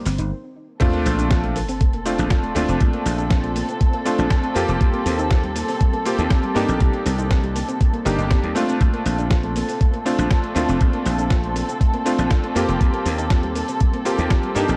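A dry, gritty hardware sound with little reverb frames this feel-good, groovy nu-disco cut from a longer piece, set in a straight four-four pulse. A clangy, cutting electric grand piano with vintage chorused unisons carries the accompaniment up front, while a dark, woody string section holds lush bowed chords with vibrato that pump against the beat. Underneath, a foam-muted, growly thumbed slap bass sits punchy and direct, and a soft, round pluck with 12-bit sampler grit, chorus and analog delay spins arpeggios in the background. A dusty, compressed sampler-style kit supplies hi-hat, shaker and a medium-tuned snare in a small room, and after a brief stop from 0.3 seconds, the drop arrives at 0.8 seconds as a thumpy electronic kick lands up front. A background sub drop rumbles until 2.8 seconds as the harmony cycles through Bbmaj9, Eb69 and Cm7.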